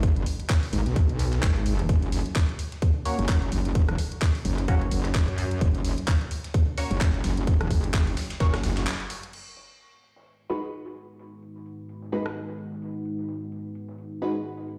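Heard through a big sound system in a bare stone room, this bouncy, swaggering bass house excerpt at 129 BPM in G# minor, with a swung sixteenth feel, rides a metallic, distorted wobble bass with sidechain pumping until a break at 8.9 seconds, along with a tight, up-front electronic kick that drops out just before it at 8.5 seconds; a garage kit's bright hats, handclaps, rim clicks and crash sit over a gritty sampler-style hi-hat and fat snare in the background, a nasal band-passed chord stab with phaser, dub echo and a filter sweep enters at 3.1 seconds, and a moody, warbling pad under its own filter sweep arrives at 11.2 seconds.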